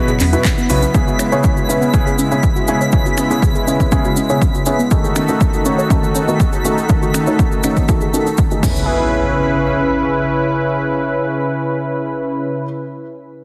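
Emotional and expansive, this progressive house excerpt sets a smooth, detuned analog pad and an intimate grand piano with audible action noise, both pumping against a punchy, overdriven kick, over a twinkling granular shimmer, a soft round pluck arpeggio in the background, metallic-hatted house drums with snaps and claps, grainy close cabasa and a brief thick sub bass, with filter sweeps on the pluck and piano until the drums drop out near 8.7 seconds and an electronic impact sounds beneath the sustained pad chords to the end, all under a heavily compressed, radio-like sound.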